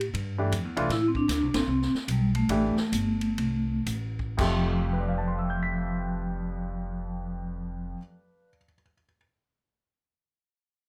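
A swung 4/4 groove starts this searching, open modal jazz fragment, cut from a longer piece, easing into a slowdown with a band accent at 1.5 seconds before the swinging big-band drum kit, with its punchy kick, medium-tuned snare, hi-hat, ride and china cymbal, drops out at 4.5 seconds. A woody pizzicato upright bass sits up front beneath an intimate concert grand piano, whose deep bass and audible action noise fill in major-ninth harmony, voiced rootless at first. A dark, ringing vibraphone with fast motor vibrato carries the smooth melody in a light reverb.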